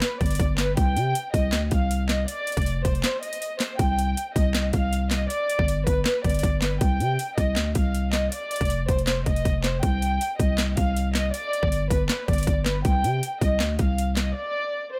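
Eerie and brooding, this half-time trap and hip hop excerpt moves at 159 BPM in C harmonic minor, circling through G5, Cm and Dm7/F chords. A warm chamber violin section carries the melody between B4 and G5, bowed sul tasto with light vibrato and a soft attack, and its intimate, close sound is darkened by a low-pass filter and trailed by tape echo. Beneath it, an electronic trap kit sits up front with overdrive, pairing a hard-clipped kick and sharp snare with metallic hi-hats and handclaps. A growling, buzzy 808-style bass with a fast attack and decaying tail rumbles from F1 to C3 and enters at 0.2 seconds. The kick drops out briefly at 3.0 seconds, and in the closing break from 14.4 seconds the violins play alone in a dry, close mix.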